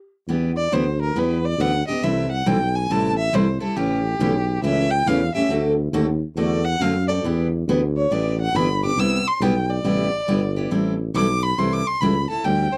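A swung 4/4 at 138 BPM drives this lively, charming fragment of acoustic string swing in the jazz manouche style, tuned slightly high at A4 = 443 Hz. A bright, freshly strung picked steel-string guitar supplies the accompaniment through Em7, C6, A7, D9 and Cmaj7 to Am7, while a mellow tuba carries the bass with soft attacks, scooped notes and light vibrato. From 0.6 seconds a focused, smooth-topped bowed violin takes the solo with vibrato until 12.8 seconds, all captured in a dry, close 1970s-style studio sound.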